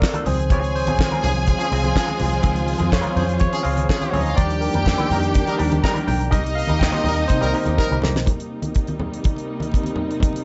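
A lightly reverberant studio mix with a softened top end carries this glamorous, danceable disco cut at 124 BPM in C minor, built on a damped 70s kit with a fat snare, tight kick, hi-hat and handclaps up front, a round, foam-muted fingered bass, and low-tuned, ringing congas in the background. A barky tine electric piano takes a solo until 8.3 seconds over Dbmaj7, Ebmaj7 and Cm7, while a twangy envelope-filtered guitar sits in the background, a clear violin section plays a second line, a dark, woody string section holds chords, and a distant horn section adds stabs. A drum fill at 7.8 seconds leads into a closing passage carried by the drums, congas and sustained strings.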